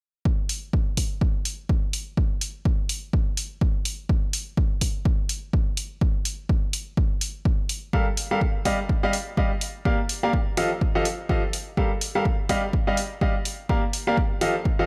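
A clear, woody upright piano stands out in this soulful, bittersweet piano house excerpt, entering at 7.9 seconds with a riff that moves through Gm9, Ebmaj9/G, Bb6 and F9, its short sustain shaped by sidechain pumping and a touch of delay. Before it arrives, a punchy analog electronic kick drum and an analog electronic hi-hat carry the track alone, both re-recorded in a large room and sitting up front. The groove runs at 125 BPM in 4/4 with a 58% swing on the sixteenths, giving the beat a loose, shuffling lilt. The piano spans F3 to F5 and sits up front with a natural tone, its chords repeating in a cycle that lends the passage a yearning quality. The overall mix is dry, with little reverb, keeping every part close and direct.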